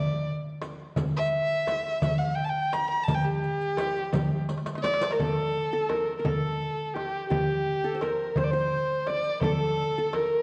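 This festive, warm passage from an Arabic maqam ensemble, cut from a longer piece, moves in a straight 6/8. A single bowed violin carries the melody up front from the first moment, its dark, woody tone shaded with vibrato. At 0.6 seconds the percussion enters: a small metal-shell darbuka sounds crisp, high and close, a large frame drum adds deep low thuds, and a riq's dusky jingles sit in the background until 5.2 seconds. A drum fill leads into the second section, and during it, at 4.8 seconds, a plectrum-plucked qanun joins with a bright-edged, triple-strung shimmer as a second line beneath the violin. The ensemble sits in the wet reverb of a scoring stage, and the whole recording carries the worn, warbly pitch drift of old cassette tape.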